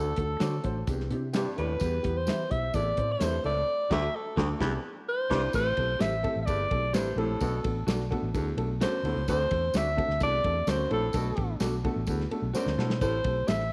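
A straight, driving 4/4 groove from a dark-cymballed soul drum kit with a tight kick, a round foam-muted electric bass and a jingly tambourine in the background carries this passionate uptempo 1960s-style soul excerpt, where an up-front alto saxophone sings the melody with scooped notes over a punchy baritone saxophone riff with vibrato, woody and slightly detuned upright piano accompaniment, and slightly broken-up electric guitar stabs with subtle chorus, all in echo chamber reverb, with a band accent from 3.7 to 5.5 seconds and a drum fill at 12.5 seconds.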